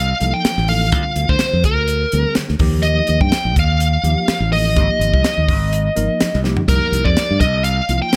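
A bluesy, distorted lead guitar carries the soaring melody up front in this funky electric jazz fusion excerpt at 125 BPM with a swung 16th-note feel, backed by a bright, growly fingered bass, a worn, slightly out-of-tune tine electric piano with light overdrive and lush chorus, and a crisp fusion drum kit with a punchy kick, high-tuned snare and dark cymbals that plays a fill at 6.4 seconds, set in light reverb over chords moving from Cm7 through Bb13/D, Ebadd9 and Abmaj9 before returning to Cm7.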